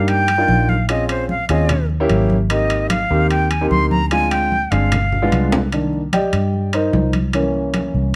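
Lightly reverberant, this sultry, sophisticated Afro-Cuban jazz excerpt in C minor moves at 149 BPM in a straight 4/4, with an airy, vibrato-laden concert flute carrying the melody up front until 5.5 seconds over a short-sustained baby grand piano comping rich chords from Cm9 through Abmaj9 to G7b9, a dark, round, foam-muted electric bass, compressed thin-skinned congas in the background and ringing, dry timbales, before a drum fill at 5.3 seconds leads into a piano solo from 5.7 seconds.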